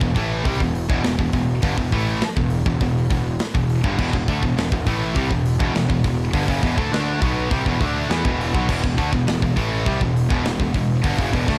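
A straight 4/4 pulse drives this relentless, aggressive heavy metal excerpt, with a tight acoustic drum kit up front: a tight kick, medium-tuned snare, hi-hat and bright crash cymbals ringing in a big room. Two picked, high-gain electric guitars grind out riffs from the background, their distorted tone bright, while a growly fuzz bass, overdriven, direct and amped, churns beneath them on a single minor chord. Light reverb and a dark, warm production give the whole passage a dense, weighty sound.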